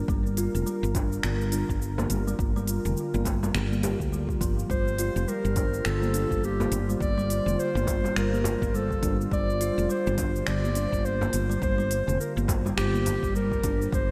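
A swung 104 BPM groove in 4/4 from an overdriven electronic kick with a deep thump and an overdriven kit of cabasa, finger snaps and smooth hi-hat drives this mystical, meditative organic downtempo excerpt in G minor, where a growly, round fretless bass pumps under a warbling, detuned analog pad holding a Gm7 chord, a woody kalimba plays arpeggios through tape echo, a band-limited frame drum joins at 1.0 seconds, a mellow clarinet carries the melody through analog delay from 4.7 seconds, and a faint electronic swell appears at 13.3 seconds, all bathed in a dreamy, lush hall reverb.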